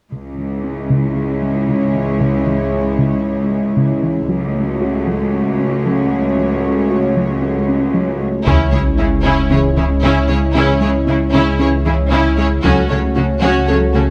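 A tight, driving sequenced synth arpeggio with chorus and delay sits in the background and a clear, focused cello section carries the bass from 0.1 seconds, joined at 0.3 seconds by a warm analog pad with chorus holding sustained chords up front, in this tense, futuristic cinematic cue, a hybrid orchestral and electronic film score in C# minor at 115 BPM, cut from a longer piece. At 8.5 seconds the build-up arrives with an impact: a huge, bright sub drop, a very quiet, dry taiko ensemble, a deep, rumbling detuned saw bass up front, lush distant violin and viola sections, and mellow French horns sustaining chords in the background. The chords move between C#m and F#m/C#, and the close, detailed sound carries light reverb.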